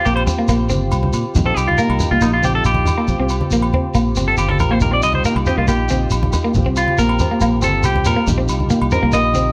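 A bright, up-front twangy clean electric guitar leads this joyful, sunny highlife excerpt at 139 BPM, its picked arpeggios trailing tape echo over a slightly broken-up rhythm guitar with phaser, a round, punchy fingered bass, a dark tonewheel organ holding sustained chords through slow rotary speaker and chorus vibrato, and percussion of grainy shekere along with background ringing agogo bells and low-tuned, thick-skinned congas, all alternating between Fsus2/Bb and Ebadd9/Bb.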